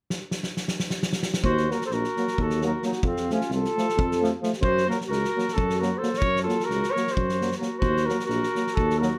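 A mellow flugelhorn with light vibrato carries the fiery, bittersweet melody up front in this Balkan brass band piece cut from a longer work, moving in a fast 7/8 at 263 BPM in Eb dorian sharp4, joined at 1.4 seconds by a bright, smooth-topped clarinet second line and a roomy tuba bass after a loose acoustic drum kit with a fat snare and punchy kick opens with a fill, while a vintage trombone in the background and a euphonium fill out the accompaniment from 1.7 seconds over Ebm, F and Gb chords in a small room.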